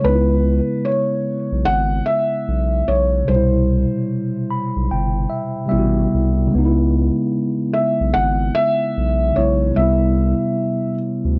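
Opening on a soft, felt-muted upright piano melody with audible action noise and plate reverb, set over clean, mellow tine electric piano chords that add a fill from 4.1 to 6.5 seconds and a deep, saturated sub bass, this nostalgic, swung hip hop excerpt moves between C#m7 and Cmaj7 through the worn, warbly pitch drift of old cassette tape until the piano melody falls away at 10.9 seconds.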